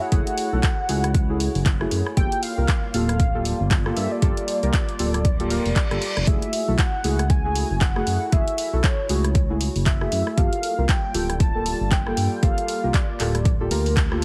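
Deep house with a late-night, deep mood, moving with a swung sixteenth-note feel as it shifts between F#m9 and Gm9 chords. A velvety, detuned synth lead carries the melody with vibrato and chorus, and it stops at 13.7 seconds. Beneath it, a warbling, nostalgic pad holds sustained chords in the background with a slow attack and lo-fi character, while deep, soft chord stabs with a cassette-tape tint and wave-folded edges decay; both pump with the sidechain. A smooth, dark synth bass with a ring-modulated edge also pumps with the sidechain, and an up-front electronic kick anchors a layered kit of handclaps, hi-hat and rim click that was re-recorded in a small room. A reverse cymbal rises from 5.4 to 6.3 seconds, and the whole mix carries a light reverb and a heavily compressed, radio-like sound.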